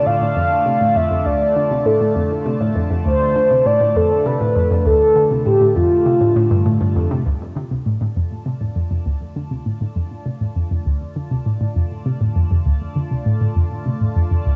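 Captured as a home cassette recording and set in a lush hall reverb, this mysterious, cosmic stretch of sequencer-driven space music moves in a straight 4/4 pulse. Up front, a hollow, bouncy square-wave pluck with a detuned noise layer, a filter pluck and a fast attack plays a low riff through chorus, phaser and delay, while a swirling, evolving sawtooth pad with a slow attack holds sustained chords beneath and fades in from 7.3 s. A round, horn-like lead, vintage and warbling with vibrato and a filter sweep, sings the melody through chorus and delay until 6.9 s, after which the pluck and pad carry on alone.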